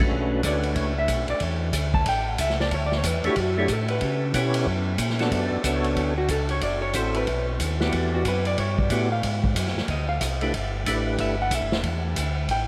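A swung 4/4 groove at 184 BPM drives this bluesy, soulful soul jazz organ trio cut, moving from D major into B minor at 5.3 s. A vintage drum kit with a punchy kick and dark cymbals sits up front beside a round, mellow tonewheel organ bass with key click and slow rotary speaker. Meanwhile a fat, percussive tonewheel organ carries the melody with chorus vibrato, and a clean, picked hollow-body electric guitar enters at 0.5 s for a solo, all steeped in a vast, echoing cathedral reverb.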